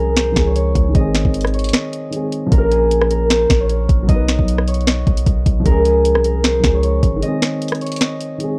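A half-time trap groove at 153 BPM carries this dark, melancholic hip hop excerpt, where an up-front, thumb-plucked concert harp sings a ringing, mellow melody over a boxy, low-passed grand piano moving through Db, Ab, Bbm and B, while a punchy sine-and-noise 808 bass hits hard and decays until 7.2 s, a trap kit of knocking kick, sharp snare, bright hi-hats, rim clicks and finger snaps drives it with tape-warm punch, and breaks at 1.7 s and 7.2 s punctuate the dry, gritty cassette sound.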